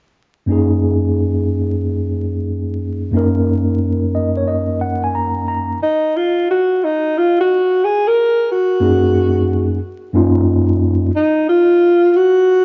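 A breathy alto saxophone enters at 5.8 seconds with a relaxed, jazz-style solo full of vibrato and scooped notes, its cassette-tape tone sounding distant and roomy yet up front, over a mellow, clean tine electric piano heard through its built-in speakers that opens on an F#6 chord, plays a fill from 3.8 seconds and drops out at 11.1 seconds as the harmony moves to a rootless G#7 with the third omitted, all in a laid-back 90 BPM hip hop groove in F# major with swung 16ths, moderate spring reverb, vinyl crackle and the dulled top end of a home cassette recording, cut from a longer piece.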